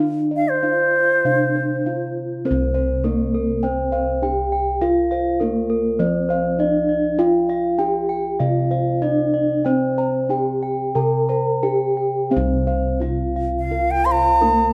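Gamelan music in C slendro, shimmering and serene, moving at a moderate 86-102 BPM in a straight 4/4 and heard as a short cut from a longer piece. A bronze metallophone struck with padded disc mallets carries the melody in a mellow, soft voice, its paired tuning producing shimmering beats. Bossed gongs fill two roles: one set plays up-front, round arpeggios high in the range, while a deeper set anchors the bass with a beating, airy resonance. A bright bansuri, pure and crisp with vibrato, sits prominently in the mix as a second line, first from 0.4 to 2.1 seconds and again at the close from 13.6 seconds. At 2.5 seconds a second metallophone joins with arpeggios, its wooden mallet giving a dark, smooth ring as the middle section unfolds before the opening material returns at 12.3 seconds. A moderate plate reverb adds space to this rough home-demo sound.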